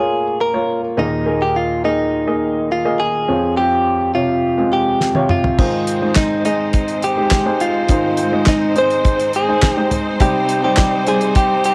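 A twangy, clean electric guitar carries the melody up front in this earnest, dramatic piano-driven pop excerpt at 104 BPM, over smooth, vintage grand piano chords moving through Bbm, Ebsus4 and Dbmaj7/F. At 5.0 seconds a damped 70s drum kit with a fat snare, tight kick and handclaps enters with a fill, and from 5.6 seconds a lush, bowed string section with vibrato adds sustained chords as the harmony shifts to Ab and then Cm. The piano, drums and strings carry a cassette tape character, and the whole sits in a moderate studio reverb with the feel of a home recording on cassette.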